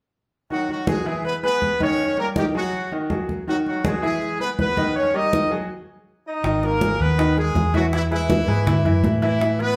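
A live band in one large, reverberant room gives this fiery, passionate salsa fragment in G# minor its wet sound, moving at 162 BPM in a straight 4/4. Up front, a tight, brilliant horn section carries the melody over a woody upright piano with short sustain and thin-skinned, medium-tuned congas, while harmony moves through C#m7, D#7 and Emaj7 before the band breaks off at 5.7 seconds. At 6.4 seconds the groove returns on G#madd9 with a dark, punchy hollow-body bass pushed forward and very quiet, low-tuned bongos played with hard hands.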